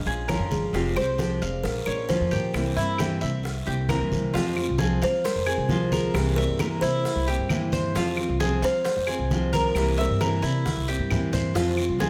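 A buzzing, hollow-boxed kalimba carries the melody with a thumbnail pluck over metallic double-stringed tres arpeggios, fingerpicked nylon-string guitar, a dark, thumpy pizzicato upright bass up front, and a bed of soft low congas, very quiet tight bongos, woody claves, raspy guiro and grainy distant maracas in this warm, nostalgic Cuban son and guajira excerpt, which moves into a new section at 4.4 seconds and has a drum fill at 10.7 seconds, all set in a large studio reverb.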